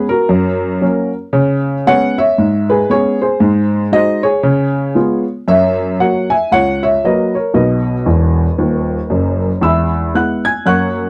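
A dry, close recording with a 1970s studio flavour puts a solo upright piano up front, its tone worn, woody and slightly detuned. This exuberant, playful stride jazz excerpt swings along in 4/4, moving through chords from F# and C#m7 to G#7, C#7 and F#7 before landing on B. A piano fill from 8.1 to 9.6 seconds leads into a new section that opens on E.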